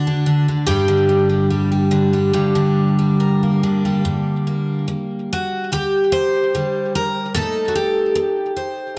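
The rhythm moves in a loose, rubato 4/4 around 72 BPM, giving this short folk piece, cut from a longer work, an unhurried, breathing pulse. A single picked twelve-string acoustic guitar plays alone throughout, its jumbo body sounding full-bodied and its octave-doubled strings shimmering from the low D2 up to C5. The mood is intimate and wistful, set in G harmonic minor, opening on D before settling onto Gm at 0.7 s. A new passage begins at 4.0 s and eventually leans into an Adim chord at 7.4 s. The guitar sits up front, touched by tape echo, while a moderate spring reverb gives the recording a gentle studio ambience.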